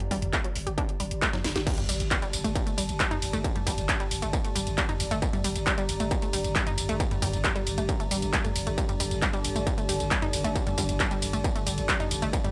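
A dry, gritty hardware recording with light reverb carries this relentless, industrial peak-time techno cut from a longer piece, driving at 135 BPM in G minor with tuning at A4 = 437 Hz. An overdriven, distorted kick and a layered kit with a cracking snare, claps, hats, ride, crash, tambourine and toms sit up front. The kit's hats, cymbals, toms and percussion pump together with a growling, buzzy 808-style bass on G1, a punchy, detuned unison pluck riff through analog delay, and a warbling, lo-fi, nostalgic tape-like pad. A drum fill at 1.3 seconds leads into the drop at 1.7 seconds, marked by a very quiet electronic impact, and a deep, moody ambient drone pad with ring modulation enters in the background from 3.3 seconds.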